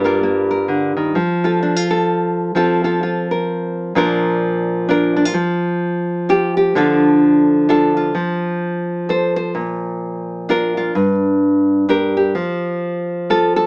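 A fingerpicked nylon-string guitar carries this wistful, haunting folk fragment alone, its full-bodied, deep classical tone sitting up front with an audible finger squeak. The solo piece moves at 129 BPM in 3/4 with a gentle swing on the eighth notes, and it is tuned slightly low to A4 = 439 Hz, covering a range from G2 to C5. The opening phrase moves through Gm7, a rootless Dm/F and F, and at 4.0 seconds a new passage shifts to Bb, Fsus2, Dm and F before cycling through Bb, Gm and back to F by 12.3 seconds. A moderate studio reverb lends a modest sense of space, while the overall sound has a small-speaker character. The guitar plays throughout this short cut from a longer piece, which ends at 13.7 seconds.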